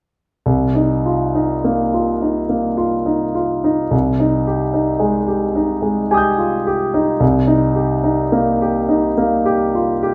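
Impressionist classical solo piano in C minor, wistful and nocturnal, moving slowly in a rubato 3/4 at around 49-56 BPM. A warm, polished grand piano sits up front and spans from deep bass to high treble, drifting from Cm7 to Fm9 over a C bass and back to Cm7 between 0.5 and 10.1 seconds. A moderate recital-hall reverb surrounds it, and the passage is cut from a longer piece.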